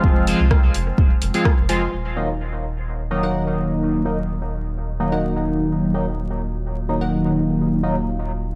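A straight 4/4 pulse at 127 BPM opens this meditative, cavernous dub techno fragment in Eb dorian, with an overdriven, up-front electronic kick and a deep house kit of hi-hat and rim click with dub echo both stopping before 1.9 s, while a round, soft sub bass and a juicy, warbling detuned polysynth playing stabs with chorus, phaser, dub echo and sidechain pumping move from Fm to Ebm as the synth's resonant filter sweep begins at 1.9 s, a crisp digital wavetable chord stab riff with dub echo sits in the background from 1.7 s, and a very quiet, moody analog pad holds sustained chords beneath it all under light reverb and vinyl crackle.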